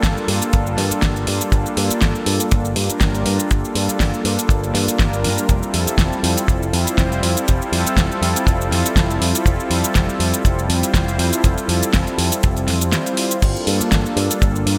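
A detuned sawtooth analog pad with chorus and digital delay sits up front in this groovy, sensual nu-disco piece at 121 BPM in G dorian, its mellow, slow-attack harmony shifting from Gm7 to Fmaj7 at 5.5 seconds and back to Gm7 at 13.4 seconds. Beneath it, a picked electric bass through an envelope filter sounds bright and punchy with sidechain pumping, while a dry, dark acoustic kick drum and an electronic pop kit with a fat snare, metallic hi-hats, shaker and crash cymbal carry a lightly swung sixteenth-note feel. The bright 1980s-style digital production adds light reverb and a small room ambience.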